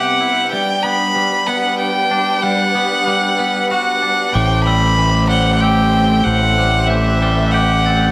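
Drenched in a lush hall reverb with a big arena sound, this soaring, hopeful rock passage in 3/4, cut from a longer piece, sets a dark, woody violin melody with vibrato and slapback echo up front over clear, focused studio strings holding sustained chords and twangy, clean electric guitar arpeggios bathed in spring reverb, until a growly fuzz bass enters at 4.3 seconds and bell-like glockenspiel arpeggios ring in the background from 4.4 seconds as the chords move from Cmaj7 and Gmaj7 to Am7.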